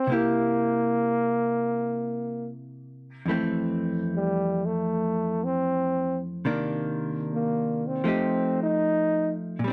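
Jazz ballad at 76 BPM in F major with a swung 4/4 feel, romantic and intimate, where a clear, punchy trombone with light vibrato carries the melody up front and takes a forceful solo from 3.3 s, over a clean, compressed, picked vintage hollow-body electric guitar accompaniment, all captured in a dry, close 1970s-style studio sound in this fragment of a longer piece.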